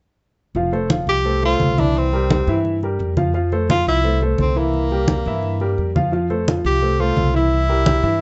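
Lively and sophisticated, this short cut of Afro-Cuban jazz moves at a straight 173 BPM in F major, alternating between Fmaj7 and C7. A woody pizzicato upright bass starts at 0.5 s, joined at 0.6 s by low-tuned, thick-skinned congas and an intimate, warm concert grand whose deep bass and audible action noise sit up front. From 1.1 s, a bright, present tenor saxophone carries the jazz melody, all under light reverb and a softened top end.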